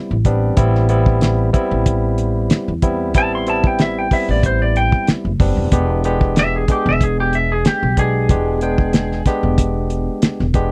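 A dry, close 1970s-style studio sound with little reverb frames this smoky, mournful straight-eighth soul blues excerpt at 93 BPM in 4/4, moving from Am7 to E7#9 at 5.7 seconds. A barky tine electric piano played through a combo amp opens the excerpt, joined moments later by a woody, thumpy pizzicato upright bass and then a cloth-damped, thuddy drum kit that sits up front with a fat, gritty snare, a tight kick and a muffled, rolled-off top. At 3.2 seconds a clean, twangy lap steel guitar enters with a compressed slide melody spanning G4 to C6 before dropping out at 9.2 seconds.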